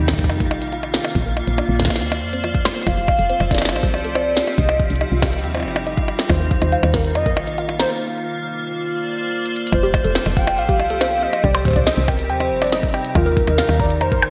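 An icy, crystalline glass pad with 12-bit sampler grit and sidechain pumping opens this wistful, glitchy IDM excerpt at 140 BPM, over a round, woody FM bass, a deep electronic kick, a clicky, up-front glitchy kit with a tiny gated snare and percussion blips, and dusty, warbling pluck arpeggios carrying chorus, digital delay and a filter sweep. A nostalgic lead with vibrato and portamento enters at 2.9 seconds, a very quiet, flickering granular texture surfaces at 4.2 seconds, and during a break from 8.0 seconds a drum fill at 9.5 seconds leads into the next section. Chords such as Ebsus2, Bbadd9, Fadd9 and Cm cycle beneath a bright 1980s-style digital production bathed in lush hall reverb.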